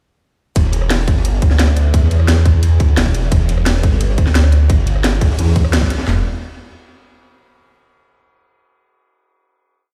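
Heard through a big sound system in a bare room and washed in a large studio reverb, this complete piece of dark technical drum and bass is aggressive and mechanical, driving at 174 BPM in E minor. The drop begins at 0.6 seconds and runs to 6.1 seconds, with a band accent at 5.7 seconds before a final note closes it out. Up front, a swirling, thick bass of detuned sawtooth voices in unison, with a sine underneath, plays chopped phrases between E1 and E2, treated with phaser, overdrive and sidechain pumping. Beside it, an overdriven electronic kit layers a tight kick, cracking snare, floor tom and handclaps into a broken-beat pattern. A second overdriven electronic kit adds tight technical drums of rim clicks, snare and bright closed hi-hats. In the background, a gritty, saturated acoustic breakbeat recorded in a small room, with dark cymbals, a high-tuned snare and a rolled-off top, loops with edits through high-pass filtering.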